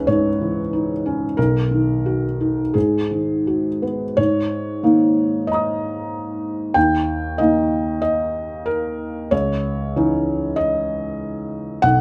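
Rubato phrasing stretches and loosens the 4/4 pulse, so the music breathes freely rather than marking a steady beat. This reflective, wistful fragment of neoclassical minimalist piano is cut from a longer piece and lasts 12.0 seconds. A single felt-muted upright piano plays solo throughout, spanning B1 to D#6 with a mellow, intimate tone and audible action noise, and it sits up front in the mix. The opening moves through C#madd9, Bmaj7 and G#m7, and at 4.2 s a second section settles onto G#sus2, shifts to D# and returns to C#madd9. A moderate studio reverb gives the sound a modest sense of space.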